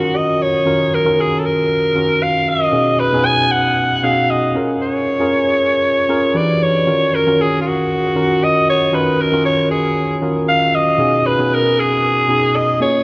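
A growling alto saxophone and a tine electric piano begin together, setting a bittersweet, nocturnal pop mood in Eb minor at 116 BPM, with a gentle swing on the sixteenths. The saxophone carries the melody up front as a solo voice, its tone raspy and breathy with a vintage grit and a clear vibrato. Beneath it, the electric piano supplies accompaniment that sounds worn and slightly out of tune, yet clean and direct, colored by a subtle chorus. The harmony moves through Ebm7, B6 and Bbm7, with a brief Em7 slipping in at 6.4 seconds before returning to Ebm7. The whole mix is soaked in a long church reverb that makes it dreamy and wet. The passage is cut from a longer piece, and both parts play throughout its 13 seconds.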